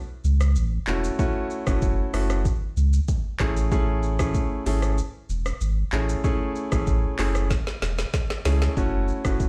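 Afrobeats groove at 95 BPM in a straight 4/4, set in F# minor with a smooth, hypnotic mood, heard as a short cut from a longer piece. A round, sine-like sub bass with a fast attack holds sustained low notes from E1 to C#2, sitting up front from 0.2 seconds. Alongside it, an electronic afro-pop drum kit brings a deep kick, woody snare, metallic hi-hat, rim click, shaker and handclaps, its overdriven tone re-recorded in a small room, with a drum fill from 7.5 to 8.8 seconds. A clear, intimate concert grand piano enters at 0.9 seconds, playing accompaniment between A3 and G#4 with audible action noise and a polished presence. The harmony moves from F#m7 to Amaj7 and back to F#m7, and the whole mix has the feel of a big sound system playing in a bare stone room.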